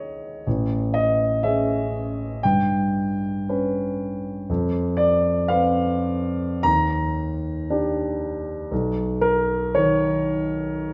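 Hazy and wistful, this brief impressionist classical fragment features a solo concert grand piano with deep bass and long sustain, set up front and drifting in unhurried rubato through Amaj7, G, F5, D#maj7 and Badd9, bathed in a moderate recital-hall reverb with a softened, rolled-off top end.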